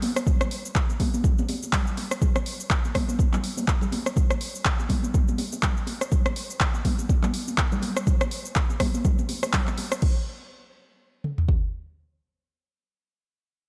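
House groove with a driving, spiritual mood, cut from a longer piece, where an overdriven afro-pop kit puts a deep kick drum and toms up front from 0.3 seconds, a layered deep house kit adds crash, handclaps, hi-hat, rim click and shaker, and bright, high-tuned vintage congas join in, all in a drop that lasts until 10.0 seconds under light reverb.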